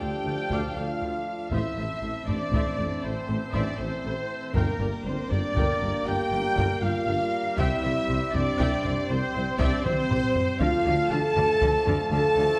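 Opening together, lush violin sections carry the melody and a second line over expressive violas, mellow French horns and distant trombones, a brilliant plenum pipe organ, tight trumpet stabs, and a low bass of tuba, smooth double basses and soft-attack cellos, while a compressed, saturated taiko ensemble struck with hard sticks enters at 0.5 s and plays a fill at 9.9 s, all forming a dramatic, epic orchestral film cue in D minor at 79 BPM in 12/8 through a moderate scoring-stage reverb.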